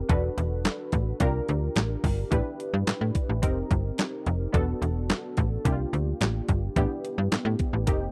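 Funky and slick, this early-eighties boogie funk fragment moves at 108 BPM in a straight 4/4, centred on A minor. A slap-like FM bass sits up front with a snappy, metallic attack and a decaying tail, running low through the whole passage. A clean 12-bit drum machine, electronic and sampler-style, drives the groove with a thumpy kick, a medium-tuned snare, hi-hat and handclaps, given grit by overdrive and a re-recorded large-room character. Set a little further back, a punchy polysynth comp blends detuned sawtooth, pulse and triangle tones with a sub octave, a nasal filter pluck and a dark, chorused sustain. The harmony cycles through suspended ninth chords, moving E9sus4, C9sus4, A9sus4 and F9sus4 before starting the pattern again. The overall sound is dry and close, like a 1970s-style studio recording with little reverb.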